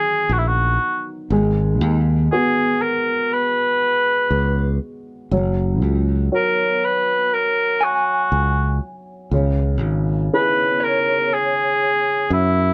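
A warm, vintage-toned cor anglais sings the melody up front in this intimate, reflective acoustic folk-pop ballad at 60 BPM in C# dorian, moving through Bmaj7, G#m7, F#5 and C#m. A dark, woody upright piano with audible action noise and a slightly detuned character accompanies throughout, while a bright, growly fingered electric bass enters at 0.3 seconds. An electric guitar through a small old amp, slightly broken-up and lo-fi with tremolo, plays arpeggios briefly at the start and returns at 7.8 seconds, all under light reverb in this cut from a longer piece.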